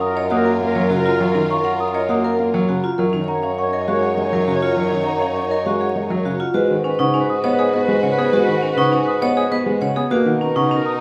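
A round, soft-mallet marimba carries the melody from the start over a smooth clarinet second line in the background, distant bowed strings holding sustained chords with soft attack and vibrato, and a mellow bassoon bass. Bell-like celesta arpeggios ring above, metallic, hard-mallet vibraphone arpeggios with fast motor vibrato move in the middle register, and a boxy, up-front grand piano accompaniment joins at 0.3 seconds. This urgent, hypnotic minimalist pattern music in 3/4, cut from a longer piece, sits in a large studio reverb with a layer of vinyl crackle.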